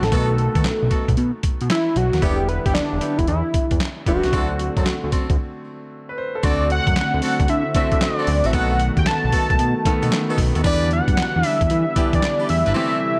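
A punchy, confident new jack swing groove in E minor opens at 114 BPM with a bold, detuned unison lead singing up front over a gritty, pitched-down sampler-style drum kit with thumpy kick, handclaps, hi-hat, snare and gated reverb, a fat sawtooth analog bass with a filter sweep, jazz-style horn stabs and a clear concert grand piano tucked in the background. After a break at 5.4 seconds, an evolving, resonant pad with chorus and a filter swell enters at 6.4 seconds, adding sustained chords beneath the lead. Light digital ambience surrounds the mix as the swung sixteenths carry through to the cut.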